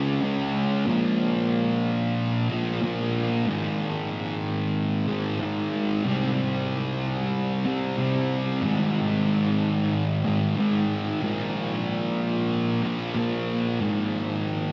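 A thick, fuzz-drenched electric guitar plays alone from the first moment of this dreamy, blissful rock excerpt, moving at 93 BPM in a straight 4/4, tuned slightly sharp to A4 = 441 Hz. The guitar is picked, distorted and double-tracked, sitting up front with a subtle chorus and tape echo, and it ranges from Ab2 up to Db4. It works through Db5, Bb5, Ab5 and C5 chords, and the same passage begins again at 11.2 seconds, returning to Bb5 and then Ab5 before the clip ends at 14.7 seconds. A huge ambient reverb with a 7.3-second tail soaks the mix, and nothing sounds above 7.8 kHz, giving the whole sound a hazy, submerged glow.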